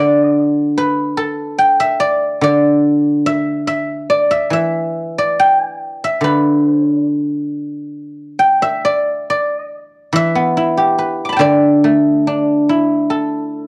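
A solo guzheng, played with fingerpicks, carries this short fragment of Chinese traditional music, its tone silvery and ringing yet mellow at the core. The mood is pastoral and elegant, and the rubato feel lets each phrase breathe freely in the 4/4 metre. Across its range from D3 up to D6, the instrument sits up front in the mix, lightly touched by studio reverb. The home cassette recording lends a tape-worn character to the sound. The opening passage gives way to a new section at 9.7 seconds, which runs until the fragment breaks off at 13.7 seconds.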